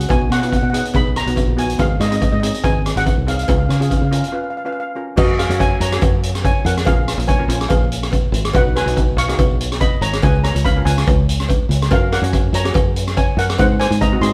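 A carefree, bouncy calypso excerpt in F# major opens with the lead steel pan, played with hard rubber sticks, carrying the melody over a fingered electric bass and a street-band drum kit of kick, hi-hat, rim click and crash cymbal, all starting together. A second steel pan, a bright double seconds, adds accompaniment in a lower register just after, while a close, dry cowbell sits in the background. The tempo is 142 BPM in 4/4 with a light swing on the sixteenths, and the harmony moves through chords such as B6, G#, C#, A#m7 and C#7 before arriving at a G#7. A brief break at 4.3 seconds leads into a second section beginning at 5.2 seconds. The pans shimmer with a metallic ring, the foam-muted bass is punchy and direct, and the up-front drums have a boomy kick, dark cymbals and a rolled-off top. The band sounds as if playing live in one room, with a moderate studio reverb around them.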